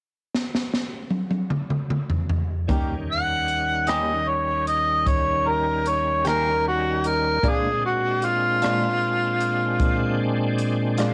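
A gritty, soulful slow blues in 12/8, cut from a longer piece, opens at 0.3 s with a swinging big-band drum fill, its punchy kick and high-tuned snare up front in an airy hall sound. At 2.7 s a twangy, picked clean electric guitar with harmonic tremolo arrives together with a lightly overdriven tonewheel organ holding full, shouting chords through a slow rotary speaker and chorus vibrato. From 3.1 s a mellow harmonica carries the jazz-style solo melody with scooped notes and light vibrato, sounding distant yet leading the mix, and the whole home recording carries cassette tape grit and small room ambience.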